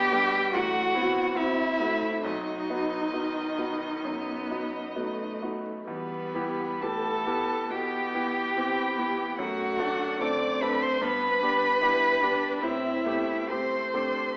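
Elegiac and yearning, this 14-second excerpt from a slow romantic classical movement for piano quartet in E minor moves in a rubato 4/4 at 61-76 BPM, with a distant, smooth violin singing the melody over a close, up-front cello second line full of portamento and soft-attacked vibrato, a focused viola and a brilliant, deep-bassed grand piano filling the accompaniment, all set in a recital hall's wet reverb and coloured by vinyl crackle and an AM radio tone.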